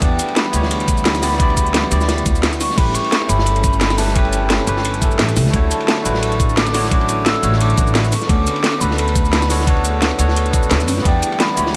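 This dreamy, rolling liquid drum and bass excerpt opens with everything at once: an airy, hollow concert flute singing a soft-edged melody with vibrato over bell-like, clean tine electric piano and a thick, warbling vintage pad with chorus in the background, all moving through Em7, A7, Dmaj7 and Bm7/D. Underneath, a woody pizzicato upright bass anchors the low end while three layered drum parts build the groove: a knocking electronic kick that drops out at 11.1 seconds, an up-front garage kit with cracking snare, metallic hats, cabasa and crash, and a gritty, saturated breakbeat kit with dark, filtered cymbals and a medium-tuned snare. Light reverb and a small room ambience give the lightly swung mix a cozy, tape-tinged glow.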